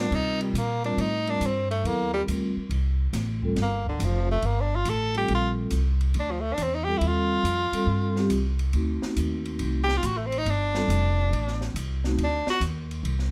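Small-group swing and bop jazz with a moody, swinging feel, cut from a longer piece. A bright, forceful tenor saxophone takes the solo up front, playing with vibrato and scooped notes in a punchy, present jazz style until about 12.6 seconds. Behind it, a vibraphone struck with soft mallets adds mellow, ringing, metallic accompaniment with a slow motor vibrato. An upright bass, played pizzicato on steel strings, sounds woody and thumpy and sits up front alongside the horn. An acoustic drum kit in a small room plays more quietly, with dark cymbals, a high-tuned snare and a boomy kick. Light reverb surrounds the group as the harmony moves through Cm7, Gm9, Eb and D7b9 before resting on Gsus2 and D7(no3).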